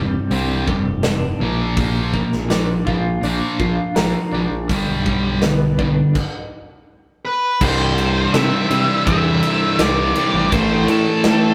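Quiet-loud alternative rock in C major at 82 BPM, cathartic and restless, with a twangy twelve-string electric guitar playing arpeggios through a tremolo effect over a scooped, high-gain guitar riff up front, a growling fingered electric bass with overdrive and a big rock drum kit with a punchy kick and crash and ride cymbals, moving through Csus2, Bb and G until a stop at 6.2 seconds, after which a dark octave-fuzz lead guitar melody enters at 7.3 seconds and a compressed distorted electric guitar riff joins in the background at 7.6 seconds over C and Am, all in a rough rehearsal-room recording with tube saturation and moderate reverb.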